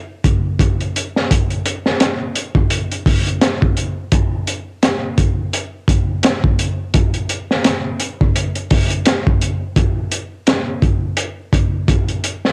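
A swung 4/4 groove at 85 BPM, with a 57% lilt on the sixteenths, drives this brooding trip hop fragment cut from a longer piece. The only part is a crunchy breakbeat drum kit of hi-hat, kick drum and snare drum, which comes in at 0.2 seconds and runs to the close at 12.5 seconds. Its punchy kick sits beneath a high-tuned snare, and the whole kit has a gritty, saturated character with a dark, rolled-off top. Cassette tape coloring on the drums, placed up front in a studio room, adds to the hypnotic mood. The recording has the feel of a home cassette production, wrapped in light reverb.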